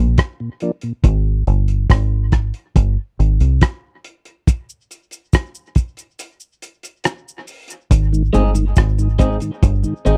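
A slow, straight 4/4 dub reggae groove at 70 BPM in Ab major carries a laid-back, hazy mood in this short cut from a longer piece. A cloth-damped acoustic drum kit sits up front on hi-hat, kick drum and rim click, sounding muffled and gritty, with a tight kick, a rolled-off top and a lo-fi, small-room character. Beside it, a deep, round, foam-muted fingered electric bass, dark and direct, holds the low end throughout. A mellow tonewheel organ with key click and a slow rotary speaker sounds a Bb chord briefly at the start, then drops away through a stripped-back break, and returns just after the harmony lands on Ab at 7.9 seconds. An acoustic cabasa, close and dry, slips in quietly at 4.5 seconds, and near the end a picked, compressed electric guitar at the edge of break-up adds a dub echo, all within a 1970s-style studio sound with little reverb.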